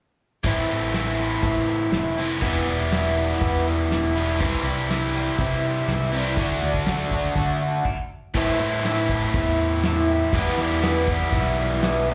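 An excerpt of folk rock with a heartland rock lean opens at 0.4 seconds with the full band together: a shimmering, octave-doubled twelve-string acoustic guitar picking out the accompaniment, a biting overdriven electric guitar carrying the riff with a slapback echo, fingered electric bass and a soft brush drum kit. The mood is reflective and dusty, moving at 121 BPM in a straight 4/4 in A dorian, with the chords cycling through Am, Em, C and D. The twelve-string sounds bright and boxy with fresh strings and audible finger squeak, while the double-tracked electric guitar sits up front, and the round bass is both direct and amped. Brushes on a dark, smooth kit with a medium-tuned snare, tight kick, hi-hat and crash keep the top end rolled off. After a brief stop from 7.9 to 8.4 seconds, the band returns on Am and Em until the cut at 12.1 seconds. The whole performance comes across as a live club gig heard through the venue's PA, with light reverb and a small-room ambience.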